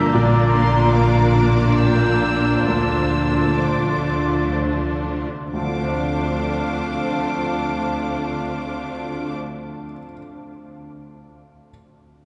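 A distant, intense violin section carries the high melody in this moving, sorrowful cinematic passage in D minor. It moves in a rubato 3/4 at 58-77 BPM, slowing over the opening bars as the harmony shifts from Bb to Dm7. A clear solo oboe, a large airy flute ensemble, a mellow, vintage-toned clarinet and a smooth second violin section weave supporting lines over lush viola, focused cello and deep double bass sections, while a bright, ringing concert harp plays arpeggios. Beneath them, a soft, felt-muted upright piano accompanies intimately. The cathedral reverb gives this cut from a longer piece a long, church-like decay, with the orchestra falling away at 9.4 s, the harp at 10.1 s and the piano lingering alone until 11.7 s.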